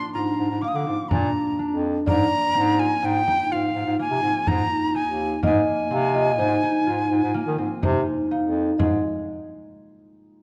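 An airy jazz flute with vibrato carries the hopeful, restless melody of this contemporary chamber piece in 7/4 until 8.3 seconds, over a woody soft-mallet marimba second line, ringing fingerpicked concert harp arpeggios, an up-front vintage bass clarinet bass line and a deep frame drum played with soft hands, all set in a dark production with moderate recital hall reverb.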